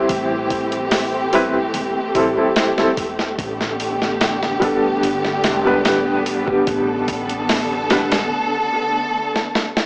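This trip hop fragment, cut from a longer piece, feels dark and smoky, moving in a straight 4/4 from an Am7 chord to a Gadd9 at 3.4 seconds. A felt-muted upright piano carries the accompaniment up front, its mellow, intimate tone colored by audible action noise, tremolo and tape echo, before it stops at 8.1 seconds. Alongside it, a lush bowed string section holds sustained chords with expressive vibrato and portamento, while a woody pizzicato upright bass sits low and quiet in the mix until 8.3 seconds. A dusty, sampler-style drum kit with a thumpy kick, a medium-tuned snare and hi-hat sounds compressed and gritty in its small room ambience, closing with a drum fill from 9.3 seconds. The whole recording has a dry, gritty hardware character, with vinyl crackle, a small-speaker quality and a light touch of small room reverb.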